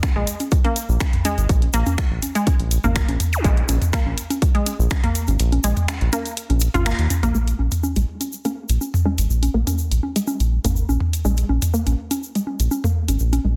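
A dense, heavily limited mix with little reverb opens this clinical, quirky slice of minimal techno, cut from a longer piece and moving at 123 BPM in a straight 4/4. A punchy, overdriven electronic kick sits up front over a layered house kit of finger snaps and hi-hat, with soft clipping on the snare, while overdriven analog congas and toms ring through digital delay and a grainy tube shaker hovers in the background. From 0.2 seconds a round, deep analog bass pumps against the sidechain beneath a squelchy, resonant blip pluck riff that runs from Ab3 to F4, detuned and bright, with subtle chorus and tape echo. A brief electronic zap flickers at 3.3 seconds, and the kick stops at 5.0 seconds, leaving the rest of the groove to carry on before a band accent at 6.9 seconds. From 7.3 seconds a filter sweep moves across the synth arpeggio sound as the percussion and kit run on to 13.4 seconds.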